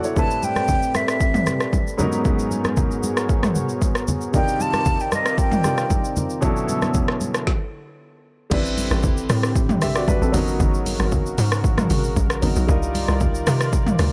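An airy, straight-toned concert flute with delay carries the melody until 6.1 s in this deep, soulful amapiano cut at 115 BPM, floating over a polished grand piano, a smooth, warbling vintage analog pad with chorus and sidechain pumping, and soft-handed congas in the background, all moving through minor eleventh chords from Am11 to G#m11, Cm11 and Bm11. The up-front drum kit brings a punchy kick, woody snare and dark hats with shaker, rim clicks and toms, and after a brief stop at 7.5 s the drop lands at 8.5 s, where a tight, percussive FM log drum bass enters with a fast attack and decaying tail. The mix is dry and close, and the piece is cut from a longer track.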